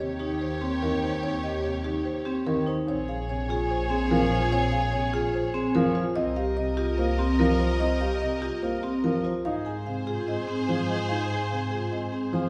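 Classical minimalist pattern music at 146 BPM in Bb dorian, this urgent yet meditative excerpt sets a woody rosewood marimba melody over a dark, boxy baby grand piano accompaniment and a lush, bowed double bass section placed up front. A soft-mallet vibraphone rings out mellow arpeggios with medium motor vibrato, while a rich violin section holds sustained chords with expressive vibrato and soft attacks. The chords move from Eb7 through Bbm7 and Cm7 to Ab, all heard from further back in a reverberant stone room.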